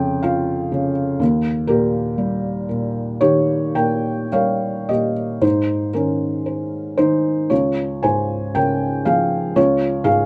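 Classical lyrical solo piano in Ab major, tender and unhurried at 52-64 BPM with a rubato 4/4 feel, played on a felt-muted upright whose thick felt gives a dark, intimate tone sitting up front with audible action noise, heard through close, detailed microphones and light reverb as the harmony moves from Db/F and Eb7 to a new section at 5.4 seconds opening on Abadd9, in this excerpt cut from a longer piece.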